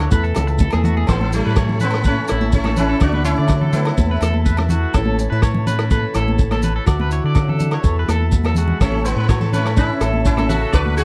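Highlife guitar band excerpt in A major at 124 BPM with a warm, carefree mood, where a fingerpicked nylon-string guitar and a buzzy vintage combo organ in the background support twangy, slightly broken-up electric guitar arpeggios with tremolo and slapback echo, over a round, punchy dub bass up front, a roomy soul drum kit with a tight kick that plays a fill at 8.2 s, ringing agogo bells, grainy shekere and damped, high-tuned congas, while a shimmering, buzzing sitar carries the melody from 1.1 s and returns at 8.8 s in a dry mix.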